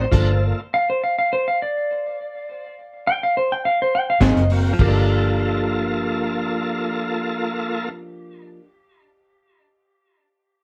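A clean lap steel, played with fingerpicks and slide and up front with volume swells and tape echo, carries the mournful, brooding melody of this straight-eighth soul blues in G minor at 103 BPM, while a bright, shouting tonewheel organ with slow rotary and key click, a round, foam-muted fingered bass, compressed direct-recorded clean guitar stabs and a crunchy breakbeat kit with dark cymbals and a punchy kick hit briefly at the opening and return at 4.2 seconds as the harmony moves from Gm9 to Ab7 and back, the band playing live in one room with moderate studio reverb.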